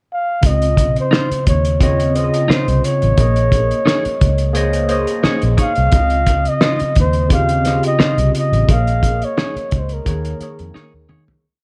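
Cinematic and smooth, this short piece of lush 1970s-style soul puts a breathy, whispered flugelhorn up front, its scooped notes shaping motif-based call phrases. Beneath it, a gritty overdriven tine electric piano with phaser pushes spread chords with grace notes, and a round, foam-muted fingered bass adds ghost notes and chromatic approach notes. A lo-fi, cloth-damped drum kit with a fat snare and tight kick keeps the groove, and a clean semi-hollow guitar enters at 1.1 seconds with short chops on the backbeat, all in a dark production with light reverb and small room ambience that fades out from 8.7 seconds as a drum fill closes it at 10.8 seconds.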